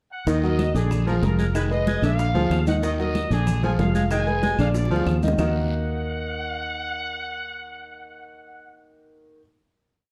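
A bright, punchy trumpet section with vibrato and a slapback echo carries motif-based call phrases through this fiery, danceable salsa piece, while a forceful baritone saxophone repeats an ostinato beneath it until about 5.5 seconds. A clear, somewhat boxy grand piano plays a montuno in octaves, and a round, dark fingered electric bass sits up front with a tumbao that anticipates the chords, both ringing into the final Ebm chord from 5.4 seconds. In the background of the vamp, thick-skinned congas play slaps and open strokes, low-tuned bongos keep steady eighths with hand bell, and raspy guiro, grainy maracas and woody, distant claves on a two-bar time line complete the percussion, set in a warm production with light reverb.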